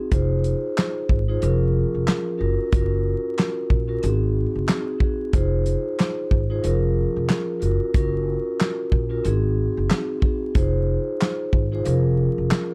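A swung 92 BPM boom-bap groove in Bb minor carries this reflective, moody hip-hop excerpt, with a punchy-kicked, rolled-off soul drum kit of kick, snare, hi-hat and handclaps, a woody, growly pizzicato upright bass, and a mellow, ringing soft-mallet vibraphone, filtered and boxy, cycling through Fm7, Bbm7/F, Gbmaj7 and Ab7 under light reverb, dark production and vinyl crackle.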